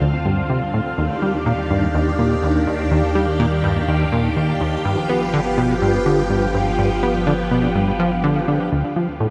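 A punchy, funky analog bass riff sits up front with a sawtooth filter pluck and analog delay in this short cut from mysterious, expansive sequencer-driven space music at 124 BPM in 4/4. A bright, swirling string machine holds sustained chords through ensemble chorus and phaser over Dm7, Ebmaj7 and G7. A round sine sub bass lies beneath, while a resonant, bubbling stepped-filter texture with chorus drifts in the background until 8.7 seconds, all set in a huge, wet ambient reverb.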